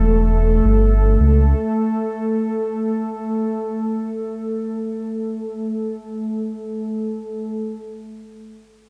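A deep, rumbling detuned saw bass and a warbling, tape-like pad open this melancholic, smoky trip hop excerpt together on an A7 chord in free time, the bass passing through a filter sweep before it drops away at 1.5 seconds. The mellow, nostalgic pad carries on alone, its slow-attack sustained chords coloured by chorus, built-in reverb and vintage 12-bit sampler grit until 7.7 seconds. The overall recording is dry and gritty.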